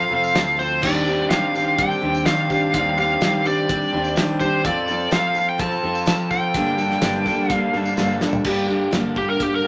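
A biting, overdriven lead guitar sings up front over picked steel-string acoustic, a twangy, slightly broken-up electric riff and a punchy fingered bass from the start of this dusty, reflective folk-rock and heartland-rock excerpt in G minor at 126 BPM, with a jingly vintage tambourine tucked in the background and a cloth-damped, thuddy drum kit with dark cymbals whose fill at 8.0 seconds leads into a brief lead solo at 8.5 seconds, all in a moderate studio room.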